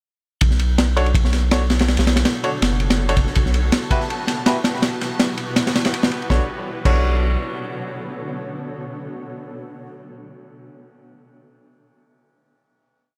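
A raw, dark drum and bass piece in B minor at 163 BPM opens at 0.4 s with a crunchy, heavily chopped acoustic breakbeat, with a punchy kick, high-tuned snare and dark cymbals under gritty saturation, alongside a deep, round dub sub bass gliding through long notes over Bm9 and Emadd9/B. A cloudy, detuned granular pad drifts in with held rootless chords and syncopated pushes, while a bright vintage grand piano scatters sparse, echoing stabs. The bass makes a short return at 6.3 s on a final Bm9 chord, the drums stop at 7.0 s, and the pad and piano carry on in a light small-room ambience.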